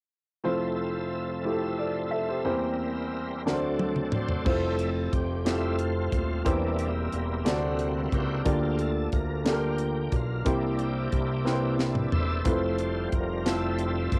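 A bright, shouting tonewheel organ leads this slow, reverent gospel excerpt in 6/8. It is lightly overdriven with slow rotary speaker, chorus vibrato and audible key click, holding sustained chords from the opening before taking a soulful solo at 4.5 seconds. A clear concert grand piano with deep bass sits up front in the accompaniment, moving through chords like Fmaj7, C7/E, D7 and Gm7/D. A tight, dry funk drum kit with an airy, polished sound, a high-tuned snare and a tight kick enters with a fill at 3.5 seconds and adds another fill at 11.5 seconds. A fat analog bass arrives at the start of the organ solo, blending detuned sawtooth and square waves into a nasal, saturated, evolving tone. The piano, organ and drums carry the character of a home cassette recording, and the room adds little reverb.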